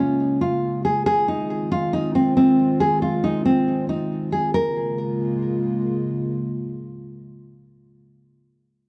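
Set in a light, digital reverb, this brief, menacing hip hop fragment moves with a tense half-time feel. A thumb-plucked nylon-string guitar carries the melody up front, its full-bodied, fresh-stringed tone touched with finger squeak and delay, until it drops out at 5.8 seconds. Beneath it, a dark analog pad sustains detuned square and sawtooth chords with a sub octave, chorus and a moving notch, its slow attack and long release holding on alone to the end at 8.0 seconds.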